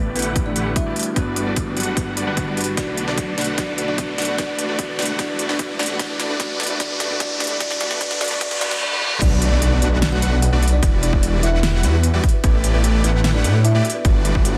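A thick, chorused detuned saw bass sits up front in this lush, playful future bass excerpt, moving at 149 BPM in 4/4 with a half-time feel in G major, over chords that cycle through A9sus4, Gmaj7, Bm7 and Em9. A woody, hollow-toned kalimba carries the melody through delay and sidechain pumping, while huge, bright supersaw chords play the riff with vintage 12-bit grit and a low-pass filter sweep across the build-up. A bell-like tine electric piano with tape echo sits in the background at the start and stops at 2.8 s, where a very quiet, round FM pluck takes up arpeggios and a drum fill begins under an ethereal, warbling pad. A riser and reverse cymbal lead into the drop at 9.2 s, which lands with an impact. A hard-clipped electronic kick and a pop kit with a fat snare and crisp hats drive the track, all set in light digital ambience within a dense, heavily limited modern master.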